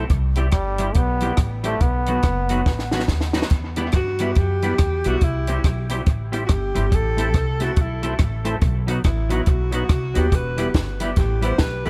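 A dry, close-sounding ska excerpt at 141 BPM in E harmonic minor, swung and driving with a mischievous edge, built on a punchy compact cocktail kit with a high-tuned snare and rim clicks, alongside a woody, thumpy pizzicato upright bass up front. A dark, twangy clean electric guitar with lush chorus plays the accompaniment while a fat, lightly overdriven tonewheel organ adds percussive stabs through a slow rotary speaker in the background, and a brilliant trombone carries a brief melody with dub echo until 3.1 s. After a drum fill, a distant, vibrato-rich alto saxophone takes a solo, entering at 4.0 s and playing to the end, also treated with dub echo.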